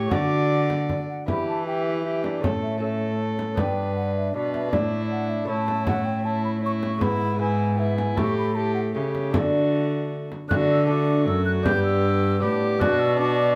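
A rich, up-front bowed cello anchors this courtly, festive renaissance-style consort dance in D major at 156 BPM in 3/4, as a pure, hollow concert flute with soft-attack vibrato carries the melody over a reedy gut-string viola second line, a mellow vintage bassoon and a delicate fingerpicked double-strung lute in the background, while a hard-handed frame drum plays from 0.1 s to 13.0 s, the consort heard in a moderate stone-room reverb in this brief cut from a longer piece.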